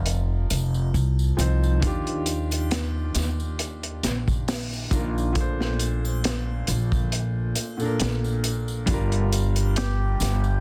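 A felt-muted upright piano, soft and vintage with audible action noise, trembles through tremolo and tape echo over a woody, thumpy pizzicato upright bass as this hypnotic, cinematic trip hop excerpt opens at 68 BPM with a light sixteenth-note swing, moving through F7sus4, Ebmaj9, Bbmaj9 and Gm7. A crunchy, saturated breakbeat kit with a punchy kick and a gritty, rolled-off top sits up front beside close, ringing tambourine and triangle. At 9.8 seconds a bright, twangy clean electric guitar enters through a phaser on a single G4, all within a dense, heavily limited modern master.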